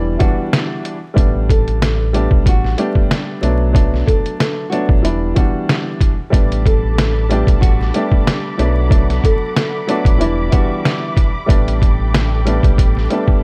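Gritty and reflective, this boom-bap hip-hop excerpt moves at 93 BPM with a swung 16th feel, built on a compressed, pitched-down sampler-style drum kit with a thumpy kick and a deep sine sub bass, both up front. A dark, woody upright piano with audible action noise plays the accompaniment over Em7, A9sus4 and Bm7 chords, while a small, fingerpicked nylon-string guitar carries the melody through tape echo until 11.0 seconds. At 6.3 seconds a soft-attack bowed string section enters with vibrato, and vinyl crackle and small room ambience color the recording.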